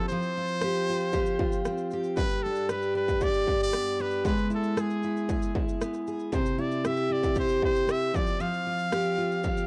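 A dry, close recording with a 1970s studio character and a small-room ambience frames this carefree, heartfelt acoustic pop fragment, which moves through Fsus2, G, E/G# and C before returning to Fsus2. Up front, a full-bodied picked dreadnought steel-string guitar carries the accompaniment, while a brilliant, punchy pop-style trumpet plays a forceful solo melody with vibrato and tape echo. Underneath, an industrial electronic drum kit of distorted kick, rim click and shaker, re-recorded in a large room, enters at 0.1 seconds.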